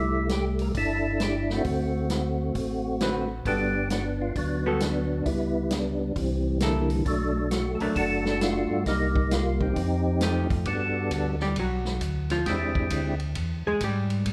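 Soul jazz organ trio, swinging and bluesy at 133 BPM in G major, with an up-front percussive tonewheel organ carrying the melody through a lightly overdriven, key-clicking tone on a slow rotary speaker while a round, dark second organ holds down the bass beneath. A vintage drum kit with a punchy kick and rolled-off top keeps the swing from 0.3 seconds, and a clean, picked hollow-body electric guitar joins at 3.0 seconds, stepping out for a solo at 10.7 seconds. The lead organ drops away at 13.2 seconds, and a moderate concert-hall reverb gives the trio a roomy, natural sheen over jazzy chords like Gmaj9, C13 and E7alt.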